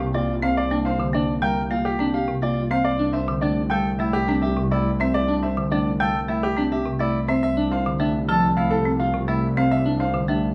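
From the first beat, a clear baby grand piano carries the melody over woody, hard-mallet folk marimba, twangy picked clean electric guitar arpeggios and a lush, bowed symphonic double bass section on C2, in a propulsive, bright minimalist classical pattern piece at 105 BPM in C mixolydian that moves from Gm7/C to Cadd9 at 2.9 seconds and to Fmaj7/C at 7.4 seconds inside a moderate large studio reverb, cut from a longer work.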